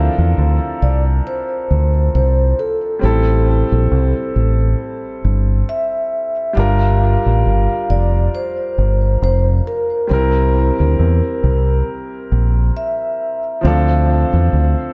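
Lovers rock reggae at a slow 68 BPM in D minor, this excerpt carries a longing, smooth mood over a gently swung 4/4 feel. A vibraphone played with soft mallets carries the melody throughout, its metallic, ringing tone mellow and warm, with a fast motor vibrato and a touch of tape echo. Beneath it, a concert grand piano supplies accompaniment with a clear, intimate sound, audible action noise, a somewhat boxy body and long sustain, also treated with tape echo. The deep dub electric bass, fingered and sitting up front as the loudest part, is dark, round and punchy, with a direct, amped character, and it drops out at 14.7 seconds just before the others finish. The harmony moves from Dm7 to Am7, Gm7 and C7 before returning to Dm7 at 13.6 seconds, all set in a light reverb.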